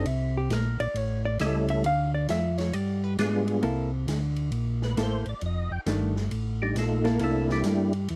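Swung eighths in 4/4 drive this bluesy, greasy soul jazz organ trio fragment, cut from a longer piece, where a mellow, round tonewheel organ carries the melody through a slow rotary speaker with chorus vibrato and third-harmonic percussion, while a dark, compressed hollow-body electric guitar and a smooth organ bass with key click sit up front. A distant, roomy big-band drum kit keeps time on hi-hat, ride cymbal and a medium-tuned snare with a rolled-off top, all inside a small room ambience. The guitar solos over Bb69, A7, Dm and G7b9 until 3.6 seconds, when the organ takes over for its solo across C13 and F13.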